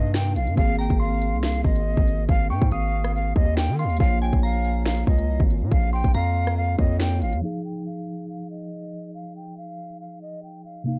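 A dark, low-pass-filtered and dry production frames this menacing, ominous half-time drill excerpt, where a breathy jazz flute with vibrato and delay carries the melody over a mellow tine electric piano, an up-front drum kit of hard-clipped kick, sharp snare, crisp hats, rim clicks and finger snaps, a heavy saturated 808-style bass that drops out at 7.4 seconds, and a faint glassy synth bell with chorus heard from 0.8 to 6.5 seconds.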